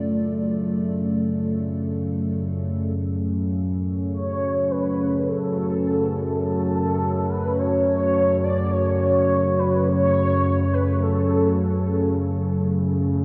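Over a straight 4/4 pulse, this cavernous, desolate dark ambient drone, cut from a longer piece, rests on a warbling, up-front analog drone with pulse-width modulation and a deep, detuned, wave-folded analog pad that fades out from 3.0 seconds as the harmony moves from Dm to F#m, while a round, horn-like synth lead with vibrato, phaser and diffuse ambient delay enters at 4.1 seconds, the whole set inside a wet cathedral reverb.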